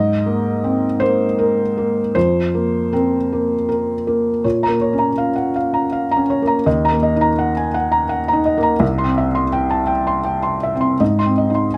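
A felt-muted upright piano plays alone from the start, its mellow, hushed tone sitting up front with the soft clatter of its action clearly audible. This melancholic, intimate neoclassical minimalist fragment is in Bb minor at 81 BPM in 3/4, with a rubato feel, and it spans C2 to C6 as it moves from Abadd9 and Fsus4 into a second passage at 4.4 s built on Bbm, Ebm, C and Ab. Close, detailed miking and a light reverb keep the sound near and personal across this 11.8-second section lifted from a longer piece.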